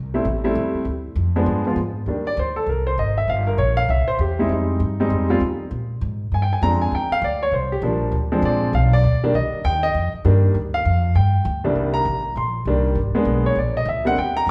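A wet recital-hall reverb surrounds this short cut from a longer jazz piano trio piece, moody and cool in C minor, swinging briskly at 198 BPM. An up-front pizzicato upright bass with a woody, thumpy gut-string tone anchors the low end from the start, while a natural-sounding baby grand piano enters almost at once. The piano takes a solo from 2.1 s to the end, moving through rich harmony such as Cm9, Fm9 and Ebmaj7 before closing on Cm7 and G#dim.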